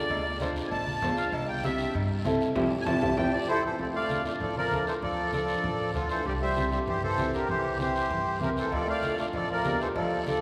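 A sweet, reedy accordion with light tremolo tuning sits up front in this fiery, danceable cumbia, taking a solo through the opening 3.8 seconds over thumpy pizzicato upright bass, a warm upright piano with long sustain, raspy guiro, bright compressed congas, and distant ringing cowbell and timbales; a drum fill and band accent hit at 2.6 seconds, and a growling, gritty trombone with scooped notes and vibrato enters as a second line at 3.5 seconds, inside a wet cathedral reverb.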